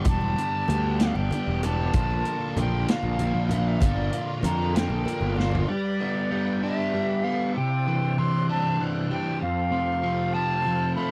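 This is a dry, close, 1970s-style studio recording, cut from a longer piece, with a hypnotic, hazy psychedelic rock mood in a straight 6/8. Up front, a crunchy, double-tracked overdriven guitar plays a flanged riff, joined by a punchy fuzz bass and a vintage acoustic drum kit with a medium-tuned snare and rolled-off top, while very quiet, low-tuned congas ring close by. An airy silver flute carries the melody from a distance with a straight tone, crisp attack and tape echo, and a thick, percussive tonewheel organ holds sustained chords in the background through a slow rotary speaker with chorus vibrato and light overdrive. The harmony moves from G to Bb. After a drum fill at 5.1 seconds, the drums, congas and bass fall away, leaving the guitar, flute and organ to move from G through Cadd9 to F until the end at 11.1 seconds.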